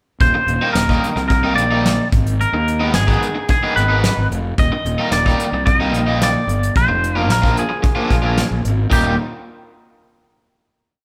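Carefree and upbeat, this short indie rock piece moves at 110 BPM in a straight 4/4 feel, centred on Eb major. A twangy, clean electric guitar carries a motif-based melody in sentence-like phrases, its bright, compressed picking colored by harmonic tremolo. Beneath it, a fingered electric bass with fuzz and overdrive sits up front, playing a punchy, syncopated riff, while a raw garage guitar with overdrive and spring reverb adds short syncopated chords. A soft brush drum kit, also up front, keeps a pop groove with a fat snare, punchy kick, hi-hat and crash cymbal. The band plays live together in a stone room with moderate reverb, moving through a single verse on Ebmaj7, Abm and Bb7 before landing on a final Eb5 chord at 8.9 seconds.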